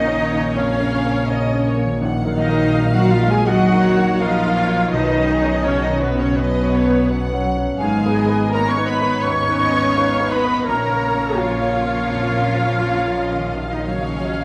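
Cinematic orchestral music with a longing, moving mood and a free, rubato feel, where a rich, lush violin section carries the melody over a second violin line, an airy silver flute, a clear piano with audible action noise, a focused viola section, mellow French horns holding sustained chords, very quiet ringing harp arpeggios, and cellos and smooth double basses on the bass, all set in the wet reverb of a scoring stage through a 14.4-second extract from a longer piece.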